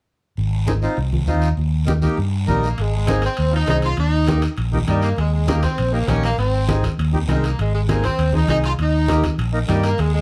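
This sunny, festive cumbia excerpt in Ab major opens at 0.4 seconds with a round, punchy fingered electric bass up front, low-tuned congas ringing in the background under hard hands, and a raspy guiro, soon joined by a reedy, dry accordion accompaniment. From 2.5 seconds a tight saxophone section takes the melody in a jazz style, present and up front with vibrato, and from 2.8 seconds compressed, saturated metal-shell timbales sit in the background. At 200 BPM in straight 4/4, the harmony moves between Ab and Eb in a dark production with light reverb.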